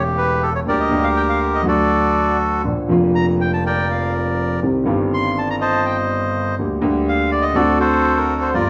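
A bandoneon and a dark concert grand piano begin together at 0.0 seconds in this dramatic, melancholic tango fragment in G minor, cut from a longer piece. The feel is rubato over a 4/4 pulse at 122 BPM. The bandoneon carries the melody with a reedy, smooth tone touched by plate reverb. The piano, mellow and boxy with a deep bass and long sustain, supplies the accompaniment from its low register up to the middle of the keyboard. The harmony moves from an opening A7 through Gm/D, D, Bb and Cm before returning to Gm/D and closing on D7 at 7.6 seconds. Both instruments sit up front, while the whole is wrapped in a wet studio reverb and heard from further back in the room.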